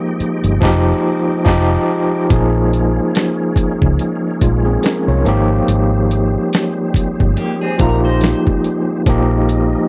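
Introspective and late-night, this slow neo-soul R&B groove at 71 BPM sways on a lightly swung sixteenth feel, moving from Fm9 through Bbm9 and Abmaj7 to Bb7sus4, with a band accent during the opening break. Up front, a barky, overdriven tine electric piano with fast tremolo carries the accompaniment over a dark, foam-muted fingered bass and a gritty, compressed sampler-style drum kit with a thumpy kick. Beneath them, a thick tonewheel organ holds sustained chords through a fast rotary speaker with key click and chorus vibrato, and a clean, hollow-body electric guitar adds a brief second line with tremolo at 7.4 seconds, all in a dry, close 1970s-style studio sound.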